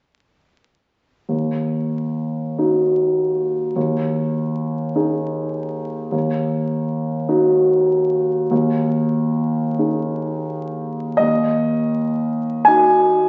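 A clear, up-front concert grand piano with a deep bass plays alone from 1.3 to 13.3 seconds in this wistful, mournful romantic nocturne fragment in Eb minor, unfolding in a slow, rubato 12/8 at 38-52 BPM, rocking between Ebm and Ab5/Eb before a new section begins at 11.2 seconds, all heard through a wet recital-hall reverb on a very old, crackling 78 rpm record with a dulled top end, cut from a longer piece.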